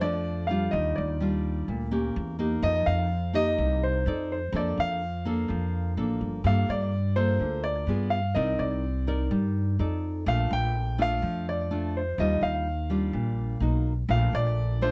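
A warm baby grand piano carries the melody up front in this breezy, relaxed bossa nova excerpt, its natural tone touched by a slapback echo. A dark, full-bodied nylon-string guitar, fingerpicked in a classical manner, supplies the accompaniment through lush harmonies such as Ebmaj9, G7b9 and Cm9, while a woody, thumpy pizzicato upright bass anchors the low end. All three sit close in a dry 1970s-style studio sound with light reverb.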